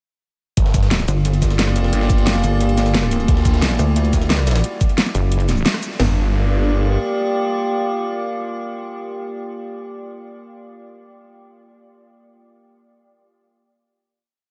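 Tense and futuristic, this short, complete dark technical drum and bass piece runs at 177 BPM, with a drop from 0.6 seconds that moves from Gm7 to Dadd9 before settling on a final Gm7 chord at 6.0 seconds. Three layered drum kits stack up: an up-front drum and bass kit with a knocking kick, cracking snare, toms and metallic hats; a tight dubstep kit with a huge snare, cabasa and rim clicks; and a gritty, pitched-up breakbeat sampler-style kit looping in the background. Over them, a swirling, phased detuned saw bass with overdrive and a heavy pulsing pluck wobble bass with changing wobble speed push forward, while an eerie, warbling inharmonic drone with chorus and reverb hangs above, set in a light digital ambience.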